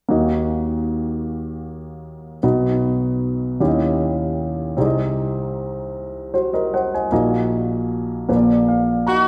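Gospel in a slow 6/8, this brief piece cut from a longer work carries a solemn, soulful mood. A grand piano opens at 0.1 seconds and carries the accompaniment through dark minor and altered chords, its intimate, natural tone placed up front with the soft clatter of its action audible beneath the notes. At 8.3 seconds the piano plays a fill that leads toward the close. A horn section enters only at 9.1 seconds with a short melodic phrase, its ensemble sound warm and present, with light vibrato and a pop-style polish that sits louder than the piano. A recital hall reverb surrounds the playing with a lingering, resonant glow.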